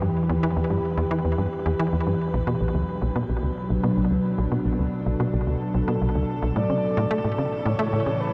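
A straight 4/4 pulse drives this mysterious, expansive passage of sequencer-driven ambient space music, cut from a longer piece and bathed in a huge, wet reverb. A tight, punchy, nasal sequencer bass riff with a plucky filtered bite sits up front beneath an evolving wavetable pad whose detuned, morphing chords sustain mellow and slow-blooming through shimmer reverb. At 6.6 s a breathy, flute-like synth lead enters with a soft, vibrato-touched melody carried on subtle chorus and delay.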